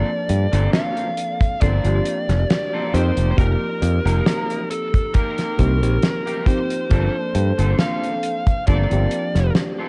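Hazy and woozy, this vaporwave excerpt drifts at 68 BPM in G minor with a light swing, moving from Gm11 to F9sus4 and back over a cassette-tinged, fairly dry sound. A dark, smooth overdriven lead guitar carries the melody through sampler grit and tape echo, while a soft, round FM electric piano under lush chorus and a twangy, slightly broken-up electric guitar riff with analog chorus fill in the harmony. Underneath, a bright, growly fingered bass sits up front with a damped 70s kit whose fat snare and hi-hat carry gated reverb, joined from 1.4 seconds by a tight, dry kick.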